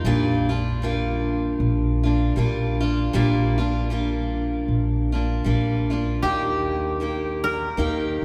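A bright, picked steel-string acoustic guitar and a dark, thumpy pizzicato upright bass open this peaceful, swung folk fragment at 78 BPM in Eb major, moving from a Bb6 chord to Eb at 6.2 seconds, when a dry, woody koto played with fingerpicks steps forward for a short solo, all set in the long, wet reverb of a cathedral-like hall.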